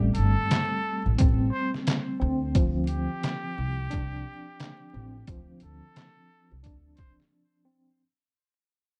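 Light reverb, vinyl crackle and a dulled top end give this short cut from a longer boom-bap hip-hop piece a dusty, reflective yet tough character, and it fades out across its full 8 seconds. At 88 BPM in 4/4 with a swung 16th-note feel in D minor, the harmony moves from Am7 to Dm7 at 2.2 seconds. A gritty, sampler-style drum kit, pitched down, compressed and overdriven, sits up front with a thumpy kick, a medium-tuned snare, hi-hat and handclaps, while a woody pizzicato upright bass with steel strings anchors the low end until 6.9 seconds. A worn, slightly out-of-tune tine electric piano plays the chords through a combo amp with medium tremolo and filtering. Above them, a jazz-style solo trumpet with a straight mute carries the melody in a nasal, breathy, whispered voice, close-miked and intimate, with vibrato, a soft attack and a touch of delay, before the drums drop out for a brief break at 7.3 seconds.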